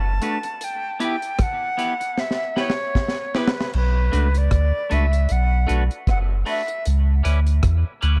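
A dark, lightly reverberant production opens this meditative, spacious dub reggae excerpt at 77 BPM, with a swung sixteenth feel over chords moving between Bm7 and C#m7b5. A round, sine-like sub bass sits up front alongside a dry reggae kit with a high-tuned snare, a tight kick, rim clicks, hi-hat and crash, which plays a fill from 2.2 to 3.7 seconds. A reedy silver flute carries the melody with vibrato and dub echo until 6.8 seconds, while a twangy, picked clean electric guitar with phaser and dub echo takes a filter sweep from 3.7 seconds onward.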